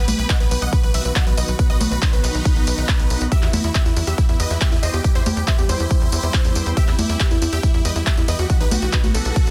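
A punchy, up-front electronic kick and a layered big-room kit of congas, handclaps, hi-hat and tambourine drive this bittersweet, emotional uplifting trance excerpt at 139 BPM in E harmonic minor, where a tight, sidechain-pumped sequencer bass underpins a huge, euphoric supersaw lead with phaser and tape echo, a lush unison pluck second line, and a shimmering, ethereal pad holding chords from B through Em and C/E in the background, before a barely audible reverse cymbal appears at 9.4 seconds in a dense, heavily limited modern mix with little reverb.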